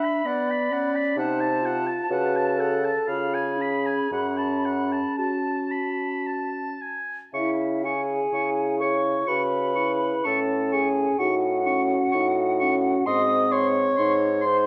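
A hollow, vibrato-tinged flute melody, a clear and distant oboe second line, dark clarinet and mellow French horn open this yearning, elegiac fragment of a slow romantic wind quintet movement in a rubato three-four metre, with a warm bassoon bass entering at 1.2 s and the harmony shifting to a new section at 7.3 s, all bathed in the reverberant glow of a recital hall.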